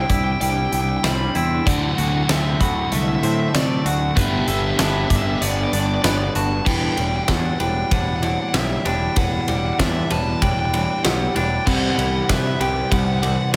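Lightly reverberant with small-room ambience, this cinematic, melancholic post-rock piece at 96 BPM in E minor sets a dark, smooth overdriven lead guitar melody with analog delay over a punchy, up-front arena drum kit with a fat snare, a round fuzz bass, clean twangy arpeggios and compressed twelve-string arpeggios (both delayed), and a blurred, evolving granular pad holding very quiet chords, while background riffs come from a crunchy overdriven guitar entering at 1.7 seconds and a lo-fi garage guitar joining at 6.7 seconds as the build-up begins.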